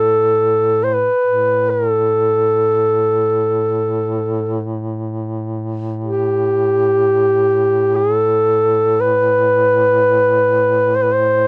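A dark duduk carries a mournful, longing melody up front in the manner of a Caucasian folk lament, its scooped notes shaded by light vibrato, while a mellow duduk holds a low drone on A2 beneath it with a vibrato and a smooth top. Both play together throughout this 11.5-second excerpt from a longer piece. The sound is dry and close, like a 1970s studio recording, with little reverb.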